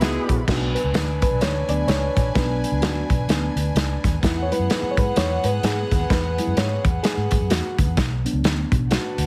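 Uplifting and warm, this short cut from a longer piece is uptempo 1960s-style soul with a swung eighth-note feel. It opens on a brief band accent, where a mellow, distant horn section with octave doubling and light vibrato sounds only for the first 0.5 seconds. From there the reedy, clean electric piano takes a solo over harmony that moves from Bm to Eadd9 and back to Bm, while a studio violin section floats behind it with soft, pure bowed tones. A vintage, foam-muted fingered electric bass gives a dark, round, amped low end. A crunchy breakbeat drum kit sits up front in a small room, with a punchy kick, a medium-tuned snare, hi-hat and dark crash cymbal. Light reverb and heavy compression give the mix a radio-like sound.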